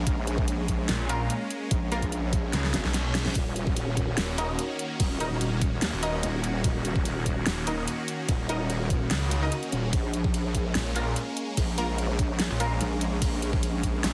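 A snarling, growling saw bass, distorted and up front, enters at 0.9 seconds to drive this menacing, heavy wobble dubstep excerpt in Eb minor at 146 BPM with a half-time feel, stacked over a saturated wobble bass with chorus and a lush supersaw pad under phaser and sidechain pumping. An overdriven, knocking electronic kick and a dubstep kit with a huge snare, hi-hat and ride carry the beat, while bold, punchy orchestra-hit-like stabs with phaser, delay and built-in reverb cut through above. The kick drops out from 2.5 to 3.4 seconds for a drum fill and a background reverse cymbal before the chords move from Bbm7 to Ebm7, all in a heavily compressed, radio-like sound with light digital ambience.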